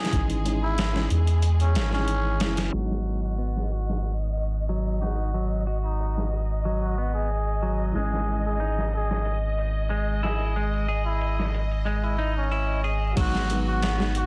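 A veiled, raspy cup-muted trumpet with dub echo carries the melody over boxy felt-muted upright piano with tremolo and tape echo, lush violin chords gritty with 12-bit sampler grain, and a gritty boom bap kit with a thumpy kick, all at once joined by a deep, round sub bass sitting up front, before a bright, clean semi-hollow guitar enters at 2.7 seconds with echoing arpeggios as filter sweeps move through the violins and guitar until 13.2 seconds, shaping a melancholic, brooding trip hop piece in G# minor at 92 BPM under vinyl crackle and a dense, heavily limited master.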